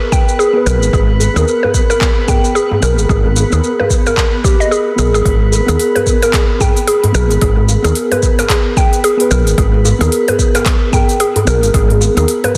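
A lush hall reverb and a dense, heavily limited modern master frame this short excerpt of earthy, hypnotic organic downtempo, moving at 111 BPM in 4/4 with a swung sixteenth feel in G# harmonic minor over a single G#madd9 chord. Muted, felt-like synth keys with a dark, intimate tone and a filter sweep carry the accompaniment, pumping with sidechain and thickened by chorus and delay. Alongside them, a mallet-like synth pluck plays arpeggios with a woody, warbling FM character, while a twinkling granular texture shimmers softly in the background. Up front, an overdriven electronic kick with a deep, layered punch sits beside a growly, round fretless electric bass that enters at 0.7 seconds, its hollow-body tone shaped by tube saturation and sidechain pumping. An organic electronic kit adds crisp hats, handclaps and shaker with tape-tinged character, and from 1.1 seconds a tight, cracking djembe played with soft hands sits back in the mix.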